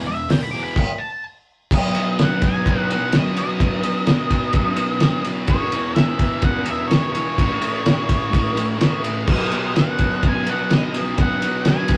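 Garage rock with a swaggering, rowdy strut at 127 BPM in a straight 4/4, cut from a longer piece, opening on a lead electric guitar solo over an E5 chord before a full stop from 0.8 to 1.7 seconds. Alongside it from the start, a double-tracked, picked fuzz guitar riff sits up front, moving over B, E5 and A chords after the stop. A distorted octave-fuzz lead guitar carries the melody up high, and a cloth-damped, thuddy acoustic kit brings a fat snare, tight kick and dark cymbals with a muffled, gritty, lo-fi tone and a rolled-off top end. The rough rehearsal-room sound has tube saturation and moderate studio reverb.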